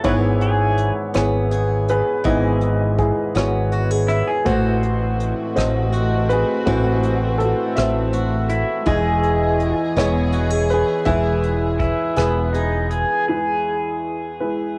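This home cassette recording has a light reverb and a soft tape haze, placing the listener close to an intimate, heartfelt acoustic folk-pop ballad with a gentle 6/8 lilt. A woody, worn, slightly detuned upright piano carries the melody up front, while a clean, compressed pedal steel guitar, played with fingerpicks and shaped with volume swells and slide, traces a second line beside it. Underneath, a boxy picked acoustic guitar with a swing feel and audible finger squeak spins arpeggios, a punchy fretless electric bass sits up front, and a soft brush kit keeps hi-hat, kick and rim click low in the mix. At 4.5 seconds a chamber string section enters with sustained chords, bowed sul tasto with light vibrato and a soft attack. As the guitar, bass, drums and strings drop out, the pedal steel takes a brief solo from 13.3 seconds alongside the piano, closing a passage cut from a longer piece.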